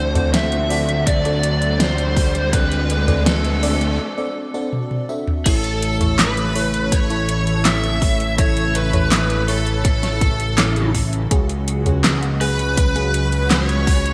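A bright 1980s-style digital production bathed in a moderate plate reverb opens this romantic, dreamy synthwave excerpt in A major, moving at 82 BPM in a straight 4/4. An overdriven lead guitar through a small cranked amp carries the melody between A4 and E5, picked and coloured by lush chorus and delay. Beneath it, a fat, detuned sawtooth bass sits up front with a filter sweep, while a silky analog string pad with ensemble chorus, phaser and sidechain pumping holds sustained chords in the background. An FM electric piano layered with a soft pad adds decaying stabs with chorus and phaser, and a background riser climbs through the opening 4.0 seconds before a short break and a drum fill. The pop drum kit, with its fat snare, metallic hats, toms, handclaps and crash under overdrive and gated reverb, joins at 0.2 seconds, and an overdriven, punchy electronic kick follows at 1.1 seconds. From 5.5 seconds a shimmering vintage string machine of violins, high between A5 and E6, adds a sustained second line as the chords move from D7 to A and on to C#sus4.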